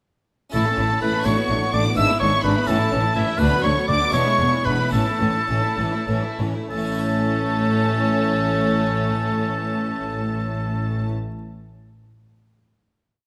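This is a complete baroque-style concerto movement in A major, lively and brilliant, set in a straight 6/8 at 62-85 BPM counted in dotted quarters. All seven parts begin together at 0.5 s with a short ritornello that broadens in pace on its way to a sustained final chord at 6.7 s. A clear, close-miked oboe with classical vibrato sits up front as the soloist, doubling the tune at the octave beneath a rich, smooth, somewhat distant violin section carrying the melody. A second violin section with a focused sound plays a rocking two-note figure and sustained chords, matched in the background by a viola section. Underneath, the cellos supply repeated bass notes and sustained bass, doubled by an intense double bass section. A full, Flemish-style harpsichord with three sets of strings adds plucked, rolled chords in the background and rings on alone until 11.4 s, all within a moderate recital-hall reverb.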